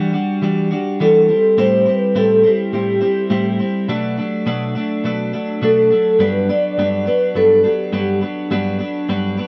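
A bright, twangy twelve-string electric guitar opens this hazy, lonely indie pop fragment at 104 BPM with a light sixteenth-note swing, its clean, compressed, up-front picking carrying a subtle chorus and a warbly pitch drift through Em9, Am7, Bm7 and Gmaj7. At 1.0 seconds a soft-mallet vibraphone takes the melody, mellow and ringing with its motor off, its boxy small-room tone thickened by ensemble chorus and tape echo, sitting louder than the guitar until it stops at 8.2 seconds. The close, dry 1970s-style studio sound carries only a touch of reverb, and the guitar rings on to the cut at 9.5 seconds.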